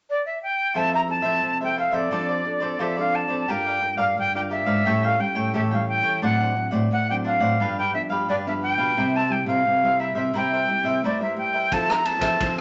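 An airy jazz flute with crisp chiff and expressive vibrato carries the melody up front from 0.1 seconds, leading this sunny, playful samba and choro excerpt in F major at 88 BPM. A warm, crisp, picked cavaquinho and two fingerpicked nylon-string guitars, one small and warm on accompaniment and one with fresh strings and a classical touch holding the bass line, move through Fmaj7, Gm7, A7, G7 and C7. A vintage drum kit with dark cymbals, a tight kick and a rolled-off top joins only at 11.7 seconds as the harmony returns to Fmaj7, all set in a wet small-room reverb.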